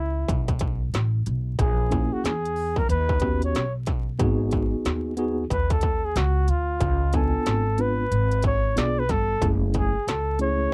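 A dry, close recording with a 1970s studio feel and a bed of vinyl crackle opens this short excerpt of smoky, nocturnal jazz-hop in C# minor, moving at 92 BPM in 4/4 with a swung sixteenth-note feel. A breathy flugelhorn carries the solo melody throughout, whispered and intimate, its soft attack and gentle vibrato giving it a jazz-style tenderness. Underneath, a woody, growly upright bass plays pizzicato, while an industrial drum kit enters at 0.3 seconds with a distorted kick, a clanging snare and smooth hi-hats, its electronic, produced edge sitting up front against the acoustic instruments. A mellow tine electric piano joins at 1.9 seconds, clean and heard as if through its own built-in speakers, filling in the harmony. The chords move from a rootless F#m7 through A#m7b5 and D#7alt to G#m7, then C#7b9, before returning to F#m7 near the close.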